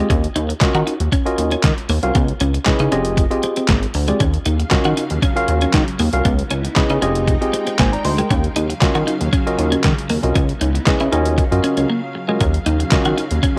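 Danceable and funky, this early-eighties boogie funk cut at 117 BPM in Eb dorian rides an overdriven, detuned 8-bit drum machine with thumpy kick, handclaps, hi-hat and snare and a glossy, up-front chorused synth bass, while a worn, slightly out-of-tune tine electric piano plays Ebm9, Dbm9 and Fm9 chords, a clean, compressed electric guitar picks a lush-chorused riff, and from 4.5 seconds a silky string machine sustains soft chords in the background, with a brief break at 11.9 seconds under light reverb.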